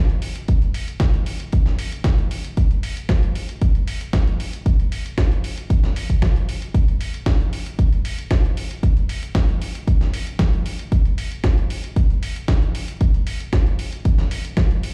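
Nu-disco at 115 BPM in a straight 4/4, this sleek, groovy excerpt is cut from a longer piece and built entirely from drums. An electronic kick drum sits up front, punchy and layered with a produced polish, entering at 0.5 seconds and running to 14.7 seconds. Beneath it, a dusty soul sampler-style kit supplies hi-hat and a medium-tuned snare, sounding gritty and compressed, with a natural pitch and the character of a re-recording in a small room. This kit sits lower in the mix than the kick, giving the groove a forward thump with a grainy layer behind it. The parts themselves carry little reverb, yet the whole track sounds as if played back on a big sound system in a bare room, lending a large studio-style ambience.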